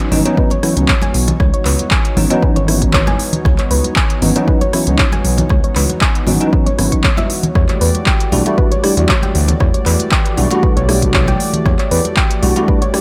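A dry, close-sounding deep house excerpt at 117 BPM in C# minor with a moody, late-night feel and a light 16th-note swing, built on a punchy layered electronic kick, a drum kit of smooth hats, handclaps and rim clicks, and very quiet hard-handed congas and bongos, while a smooth gliding synth bass with vibrato and portamento sits under clean, chorused electric piano stabs with dub echo, a detuned analog pad holding sustained chords in the background, and a soft, round, dark pluck arpeggio with a moving notch and dub echo, the pad, stabs, bass and pluck all pumping against the kick as the harmony moves from C#m11 to Em11 at 7.6 seconds.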